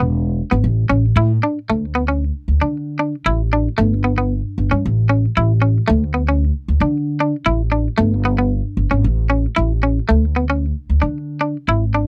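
Carefree and joyful, this brief highlife guitar band passage pairs a bright, twangy clean electric guitar playing picked accompaniment with a woody pizzicato upright bass, both up front throughout in a dry, close 1970s-style studio sound, as the harmony moves through G, A and D5 from 3.8 s before the chords fall away again at 10.1 s.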